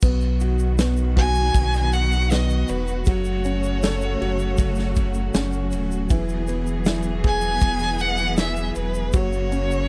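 A dry, close 1970s-style studio sound frames this hopeful, heartfelt pop ballad excerpt in B major at 79 BPM in 4/4, where an intimate concert grand piano with audible action noise and a lush bowed string section carry the chords over B, F#m, E and F#, a round, deep sine sub bass and a big-room acoustic drum kit with a punchy kick and medium-tuned snare sit up front beside a grainy egg shaker in the background, and a solo violin enters at 1.2 seconds with an expressive melody full of vibrato and portamento.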